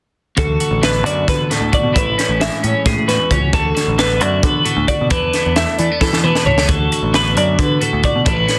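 The recording has a dense, heavily limited modern sound with light reverb, in this short cut from a longer math rock and midwest emo piece that feels intricate and wistful in an odd 7/8 metre with a straight feel. All four parts enter together at 0.4 seconds: two clean, picked twelve-string electric guitars with a bright, twangy, compressed edge, one playing accompaniment through spring reverb and the other, sitting up front, spinning high arpeggios colored by analog chorus. A warm picked electric bass, recorded direct and amped, holds down the low end. The crisp fusion drum kit sounds acoustic, saturated and gritty, with a punchy kick, a high-tuned snare, toms and hi-hat, and a pumping small-room ambience placed up front. The harmony circles through D6, Amaj9 and E7sus4, and a drum fill from 6.0 to 6.7 seconds leads back to D6 before the passage cuts off at 8.6 seconds.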